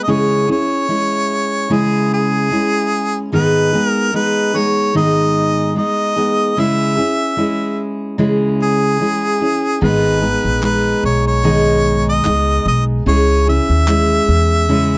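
A bright, close-miked harmonica carries a tender, wistful melody over a full-bodied, fingerpicked steel-string acoustic guitar in this unhurried acoustic pop piece at 74 BPM with a gentle sixteenth-note swing, moving between C#m and G#m, as a woody pizzicato upright bass enters at 9.8 seconds and hollow group handclaps join from 10.6 to 14.1 seconds, in a dry, close 1970s-style studio recording touched with light reverb.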